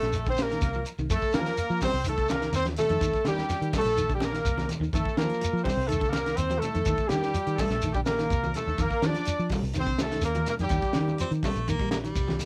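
Hypnotic and joyful, this afrobeat excerpt at 125 BPM in F mixolydian sets a punchy, close-miked horn section with octave doubling up front over a bright trumpet second line carrying tape echo, a round foam-muted fingered bass, a tight funk kit with a high-tuned snare, grainy shekere, clean arpeggios from a background semi-hollow guitar, and low-tuned, ringing congas from 1.3 seconds, before an edgy, forceful baritone saxophone cuts in at 11.2 seconds, all in a lightly reverberant home cassette recording that moves between Eb and F7sus4 chords.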